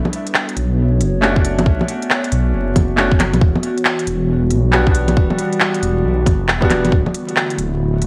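In this nocturnal, rainy future garage excerpt, a warbling lo-fi pad with chorus and sidechain pumping and a deep, rumbling detuned saw bass open together, joined at 0.1 s by a swung organic electronic kit of bongos, handclaps and smooth hi-hats in gated reverb. A bright, woody upright piano with delay enters at 1.2 s, and a tight, up-front electronic kick with 12-bit sampler grit arrives at 1.4 s, all moving through Bm9, Em9 and Dadd9 beneath a haze of vinyl crackle.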